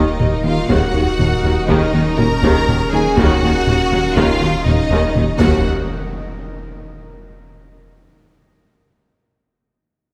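Set in a straight five-beat metre, this tense, futuristic hybrid film cue opens with a lush bowed violin section carrying the high melody over a clear second violin line, a rich viola accompaniment and dark French horn chords, all washed in the reverb of a wet scoring stage. Beneath them a deep, round analog bass riff with ring-modulated edges joins a mellow, distant tuba, a very quiet double bass section, expressive cellos and a pure sine sub bass, while an evolving, warbling vintage wavetable pad with chorus hangs in the background. A heavy-sticked taiko ensemble drives from 0.2 s, and an electronic impact strikes at 5.4 s as the orchestra falls away near 5.7 s.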